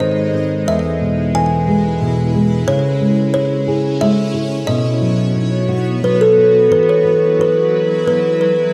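This children's lullaby excerpt in E major sways gently in 3/4 at 90 BPM, sleepy and tender, tuned slightly low to A4 = 437 Hz. A woody, ringing, close-miked kalimba carries the melody with a slapback echo, while a thumb-plucked nylon-string guitar supplies classical accompaniment up front and a cloudy, granular pad with slow attack and its own reverb hovers beneath. Set in a dark recital-hall ambience, the chords move from E through C#m and B before settling on Esus2 at 6.7 seconds.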